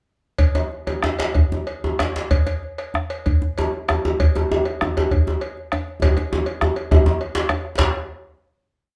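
A moderate studio reverb gives this short, complete West African drum ensemble piece a sense of space as it drives forward powerfully in 12/8, pushing from about 124 toward 144 BPM across its brief length. A round, close bombo and a medium-tuned, dry djembe played with soft hands hold evenly spread patterns, while a metallic cowbell rings out its bell pattern from a live room. A second, tight and cracking djembe sits up front despite its distant, large-room sound, calling out lead phrases. A drum fill runs from 6.0 to 7.8 seconds before the ensemble lands on a final hit that rings until 9.0 seconds.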